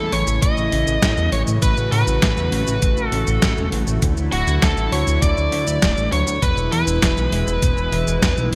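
Nostalgic and romantic, this synthwave excerpt moves at 100 BPM in a straight 4/4, cut from a longer piece and moving through A, Dadd9 and E. A bluesy overdriven lead guitar carries the melody up front, its picked, distorted tone trailed by digital delay, while a soft FM synth bell with a pure, warbling vintage character traces a second line in the background through chorus, phaser and delay. Beneath them, a smooth sawtooth analog pad holds sustained chords with a soft attack, chorus and sidechain pumping, and a glossy chorused synth bass blends pulse, sawtooth and sine waves with a filter sweep. A dark, clean, fingered electric guitar plays very quiet compressed arpeggios, entering at 0.1 seconds. The rhythm comes from a detuned 8-bit drum machine of hi-hat, shaker and a medium-tuned snare, placed up front with gated reverb, joined at 0.4 seconds by a thumpy, tape-tinged electronic kick, all set in a moderate plate reverb with bright 1980s-style digital production.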